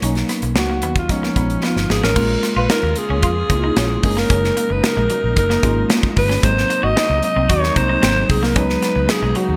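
Upbeat and urban, this polished 1980s jazz-funk pop excerpt in F# major moves at 112 BPM in a straight 4/4. A punchy, up-front drum kit with gated reverb and a round, foam-muted fingered bass drive it, while a worn, slightly out-of-tune tine electric piano and a twangy, slightly broken-up guitar riff both shimmer with lush chorus. A breathy, raspy alto saxophone carries the melody from 0.6 s, and dark, sul tasto strings enter with soft sustained chords at 2.2 s after a drum fill, all set in a bright 1980s-style digital production with moderate plate reverb.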